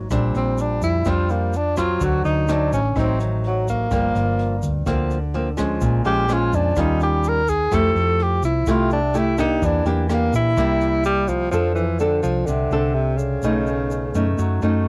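A romantic, relaxed bossa nova at 126 BPM, this straight 4/4 excerpt sounds like a home cassette recording in a dry space with little reverb. Up front, a breathy tenor saxophone carries the melody as a jazz-style solo, mellow and smooth on top, with vibrato, subtone and scooped notes. Beside it sit a small, fingerpicked nylon-string guitar in accompaniment and a round, dark hollow-body short-scale electric bass, fingered and amped, with a touch of transformer saturation. In the background, a jazz brush kit plays hi-hat, a punchy kick and rim clicks until 11.4 seconds, while a grainy, bright egg shaker sits close under everything through to the end. The harmony moves through rich chords such as Bb69, D7b9, Gm7 and Fmaj9, and at 11.5 seconds a new section settles on F6 before reaching B9.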